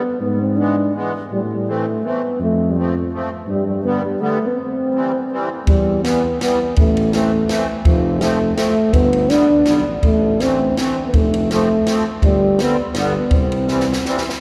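Alpine folk dance-band music in a lilting three-beat swing with a loose, rubato feel, festive and bouncy, cut from a longer piece. A dark euphonium carries the melody up front in a classical style with light vibrato, while a reedy musette accordion shimmers beneath it with its characteristic musette tuning. A tuba in the same classical manner supplies the bass line. The harmony leans through A minor, F and G before settling on C. At 5.7 s a compact cocktail drum kit joins up front for the second section, its punchy kick, high-tuned snare and dusky cymbals sounding dry and natural against the cathedral-like reverb that surrounds the band, and a drum fill at 13.7 s rounds off the passage.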